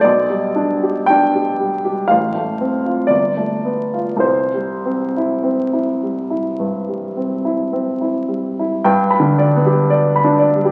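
Tender and dreamy, this brief cut from a romantic classical nocturne features a single upright piano, woody, polished and up front with a short sustain, played with rubato in a wet recital hall and heard through the crackle of a very old 78 rpm record, with a new section arriving at 8.9 seconds.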